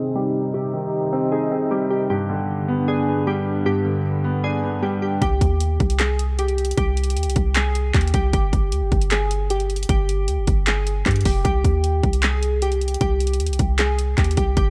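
Brooding and dark, this half-time trap and hip hop excerpt at 154 BPM in C harmonic minor opens with a filter sweep over its first 5.2 seconds, as a mellow, vintage-toned grand piano and a detuned, wave-folded resonant pad with chorus and phaser sustain Cm and G chords beneath a glassy, bright digital keys melody. At 5.2 seconds the piano and pad stop, and a deep, boomy 808-style bass enters with a trap kit of bright hi-hats, handclaps and hard-clipped, overdriven kicks carrying 12-bit sampler grit, while the keys carry on until the close at 14.7 seconds. The sound is dry and close, with the drums, bass and keys all up front.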